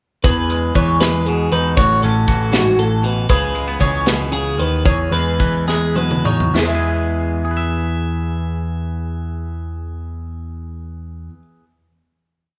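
Light reverb surrounds this intricate, wistful math rock and midwest emo piece in E major, moving in 6/8 at 67-79 BPM, where a twangy electric guitar plays syncopated fingerstyle accompaniment, a bright, compressed twelve-string electric guitar picks a clean arpeggiated ostinato, an up-front overdriven picked bass growls, and a punchy acoustic studio drum kit with a rolled-off top keeps a 6/8 groove, the tempo slowing from 3.3 s until a drum fill brings in a final E chord at 6.5 s, the drums stopping at 6.7 s.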